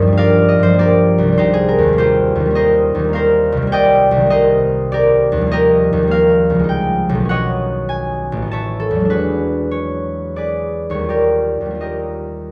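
A solo concert harp, acoustic and ringing, sits up front under close, detailed microphones in a moderate recital-hall reverb, its fingerpicked chords spanning A1 to A5 in a serene, peaceful classical passage cut from a longer piece, moving in a rubato 3/4 as the harmony passes from Gm7 through a chain of added-ninth chords to Aadd9 and E9 before arriving on Ebadd9 at 11.1 seconds.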